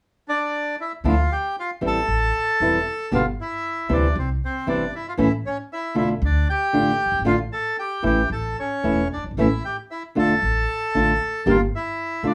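A rubato feel stretches this 4/4 tango around a pulse of 116 BPM, and the mood is tense and passionate in D minor. A reedy, bright bandoneon carries the melody up front from 0.3 s, with the fingerpicked nylon-string guitar and the pizzicato upright bass joining at 1.0 s. The guitar's small, warm accompaniment sits forward beside the bandoneon, while the steel-strung bass gives a woody, thumpy foundation beneath them. The harmony moves from Dsus2 and Dmadd9 through Am7, G, C and A before returning to Dm and settling on G5 as the passage breaks off mid-piece. Light reverb and studio ambience frame a rough home demo mix.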